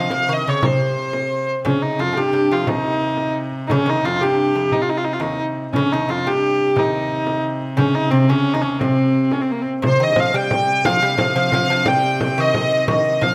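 Close, detailed microphones in a moderate recital hall reverb give this short cut from a longer medieval dance a mysterious, ancient air, moving at 118 BPM in a straight 6/8 in C phrygian. Up front, a rich, nasal hurdy-gurdy carries the smooth, even melody, while a delicate fingerpicked lute with gut double strings plays a second line beneath it. In the background, a reedy viola da gamba holds a ringing C3 drone with light vibrato, and a small, bright frame drum played with soft hands joins at 0.1 seconds.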